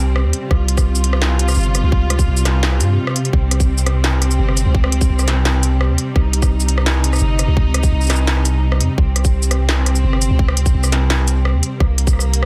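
A half-time drum and bass groove at 170 BPM in 4/4 sets a dark, spacious mood in C Phrygian, with a tight, layered electronic kick up front alongside an industrial kit of clanging snare, crisp hats, rim click and shaker that sounds re-recorded in a small room, and a brief break falls between 3.0 and 3.3 seconds. A deep, sine-like 808-style bass holds long, mellow notes with a fast attack and natural decay, prominent in the mix, while a bowed studio string section plays sustained, intimate chords sul tasto with light vibrato, soft attacks and a smooth top, pumping under sidechain compression on a C minor harmony. The digital ambience and dense, heavily limited master give this short cut from a longer piece a modern, compressed sheen.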